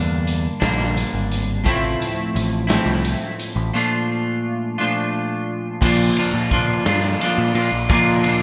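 A bright, twangy clean electric guitar leads this wistful, jangly indie rock excerpt, its double-tracked picked riff sitting up front and ranging from G2 to F4. Beneath it, a growling picked electric bass adds overdriven grit from the lowest register, while a raw garage drum kit enters at 0.3 s with a punchy kick, medium-tuned snare, hi-hat, ride and crash, its rolled-off top and gated reverb giving it a dark, smooth weight. The tempo is a slow 58 BPM in dotted quarters, in a straight 6/8 feel. The harmony moves from Gm through Fmaj7/A to Bbmaj7, then settles on Bb as a new section begins at 5.8 s. A lush hall reverb and a small room give the bright 1980s-style digital production its sense of space, and the fragment breaks off at 8.4 s as part of a longer piece.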